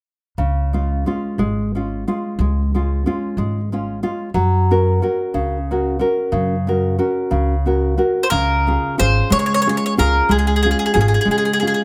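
An Italian folk serenade in Db major, this romantic, sunny fragment unfolds in 6/8 at 61 BPM, counted in dotted quarters. A fingerpicked classical nylon-string guitar with audible finger squeak and a woody pizzicato upright bass on steel strings carry the accompaniment from 0.4 s, moving from Db to Gb and back to Db. At 8.2 s a round, warm mandolin with picked double strings steps up front with the melody, and the trio is heard through close, detailed microphones in light reverb.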